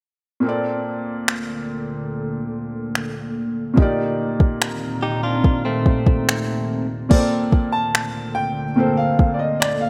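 A slow, straight 4/4 groove at 72 BPM anchors this smooth, romantic contemporary R&B excerpt in Bb major, with an up-front, produced drum kit of soft kick, finger snaps and crash cymbal carrying a gritty overdrive. A felt-muted upright piano opens the passage at 0.4 s with mellow, intimate accompaniment, its thin felt and audible action noise close in the ear as the harmony moves from Bbmaj7 to Cm7/Bb. Beneath it, a deep, dark pad of detuned sawtooth and sine layers with a sub octave blooms on a slow attack, sustaining moody chords through chorus, its own built-in reverb and sidechain pumping. A clean, direct-recorded electric guitar adds bright, compressed, picked arpeggios between 5.0 and 6.9 s, touched with spring reverb and delay. At 7.1 s the chords return to Bbmaj7 and a boxy grand piano steps forward with a high melody. A moderate, lush hall reverb surrounds the rough home-demo mix.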